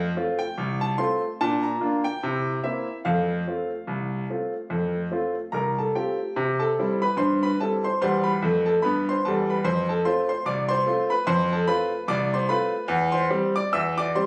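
Ragtime piano at 73 BPM in 2/4 with a light swing on the sixteenths, lively and playful, moving from F major into C major at 6.3 seconds in this short cut from a longer piece. A bright concert grand plays solo, brilliant and up front with a deep bass, spanning C2 to E6 through changes like F, Bb and C7 before settling around C and C/E. Captured on a phone in the room, the sound carries a light club reverb and a natural feel.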